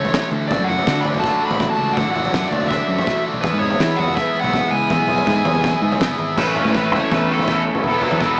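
A home cassette recording with a small-speaker sound and light reverb carries this short cut of wistful, carefree indie rock at 164 BPM in A major. A dark, smooth overdriven lead guitar sings the melody over a crunchy guitar riff with chorus, both trailed by tape echo, alongside a thick, distorted fuzz guitar, a punchy overdriven fingered bass, and a loose drum kit with a fat snare and boomy kick, while a lush, very quiet string machine holds sustained chords from 0.5 seconds. The harmony moves from Dadd9 to E, then shifts at 6.4 seconds to Aadd9 and Esus2.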